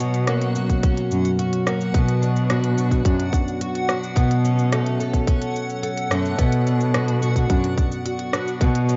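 A shimmering, octave-doubled twelve-string acoustic guitar fingerpicks arpeggios over a warbling, lo-fi tape-like pad and a veiled, bowed cello played con sordino as the bass, while an organic electronic kit adds crisp overdriven hi-hat, rim click and shaker, and a reversed, granular, dreamy texture hovers faintly high above. At 0.7 seconds a tight, overdriven electronic kick arrives up front, grounding this autumnal, wistful folktronica fragment in a straight 4/4. The dark production sits in a moderate echo-chamber reverb.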